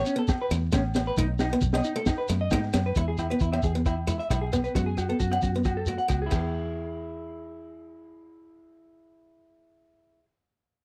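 A dry, close 1970s-style studio sound with light reverb frames this sunny, danceable highlife guitar band excerpt in E major at 134 BPM, where a twangy, slightly broken-up electric guitar plays slapback-echoed arpeggios over a round, foam-muted fingered bass, a bright picked acoustic archtop with finger squeak, a gritty, saturated breakbeat kit with a punchy kick and high-tuned snare, a grainy shekere and ringing agogo bells, until by 6.7 s the archtop, drums and percussion have stopped, leaving guitar and bass to carry on to 10.3 s.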